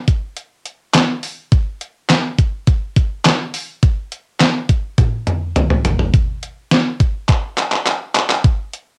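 A detuned 8-bit digital drum machine carries this bright, wistful pop fragment on its own, sitting up front with a thumpy kick and a medium-tuned snare alongside handclaps, hi-hat and toms. Its electronic, sampler-style sound is overdriven and colored by cassette tape, as if re-recorded in a small room. The groove moves at 104 BPM in a straight 4/4. A drum fill arrives at 5.0 seconds, leading into a new section, and a second fill follows at 7.3 seconds before the drums stop at 8.9 seconds. Moderate studio reverb and the character of a home cassette recording give the short clip a homemade, wistful charm.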